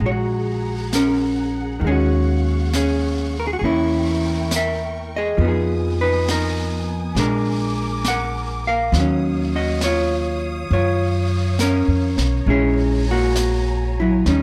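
A dark, clean hollow-body electric guitar sits up front in this melancholic, wistful jazz ballad excerpt at 68 BPM in Eb minor with a swing feel in 4/4, joined throughout by a woody pizzicato upright bass, a bowed string section holding sustained chords with expressive vibrato and portamento under a smooth top, and a vintage brush kit with a high-tuned snare and hi-hat, all captured close and dry as the harmony moves from Gbadd9/Bb through Ebm11, Edim7, Fm7b5, Bb7 and Ebm9 to Bbm7b5.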